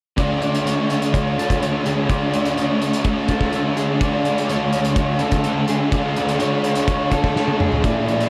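Dreamy and blissful, this short cut from a longer shoegaze and dream pop rock piece drifts along at 126 BPM in a straight 4/4, resting on a Dmaj7 chord in D major with tuning set to A4 = 438 Hz. From 0.2 s, two guitars pick out riffs up front in the low and middle register: a thick fuzz guitar, dark and distorted and thickened by ensemble chorus, alongside a crunchy overdriven guitar with a warm edge whose notes bloom through reverse reverb. Above them, an electric guitar through a small old amp plays fingered arpeggios with a lo-fi, slightly broken-up and compressed tone, washed in lush chorus and analog delay. A loose indie drum kit sits in a pumping studio room, with a punchy kick, a medium-tuned snare, hi-hat and toms, and a rolled-off top, and it breaks into a drum fill at 7.4 s. The whole mix is soaked in a huge ambient reverb with a 7.9-second tail, which gives the blend its hazy, floating glow.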